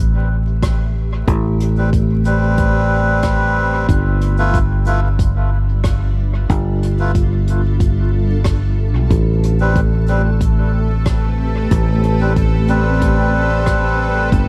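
A blurred, cloudy granular pad fades in over a growly, up-front fingered electric bass to open this hazy, spacious ambient dub excerpt in A minor at 92 BPM, drifting between Am9 and G13, before a deep, background electronic kick and a soft brushed jazz kit with dub-echoed hi-hat and rim clicks arrive at 0.6 seconds, a reedy, breathy melodica adds echoing stabs from 1.8 seconds, and a bright, resonant bubbling filter texture with chorus enters on A4 at 9.9 seconds, all wrapped in small-room ambience and vinyl crackle.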